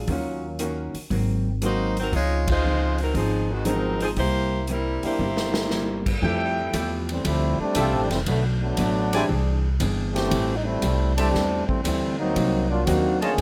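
A clear, close-miked trombone section stands out in this energetic, brassy big band swing excerpt, taking a vibrato-tinged solo line from 7.1 seconds, shortly after the key settles into F major. Before that, a soft-attacked saxophone section carries the melody from 1.6 to 6.0 seconds over a woody, pizzicato upright bass that sits up front. A hall-toned drum kit with a punchy kick, medium-tuned snare, ride, hi-hat and crash swings steadily at 117 BPM, marking a band accent at 2.4 seconds and a short fill just before the second section. A trumpet section with light vibrato adds stabs from 6.2 seconds, while a concert grand piano with deep bass and a dark, clean hollow-body electric guitar fill in the background. The harmony moves through rich jazz chords, and light reverb gives the ensemble a natural sense of space.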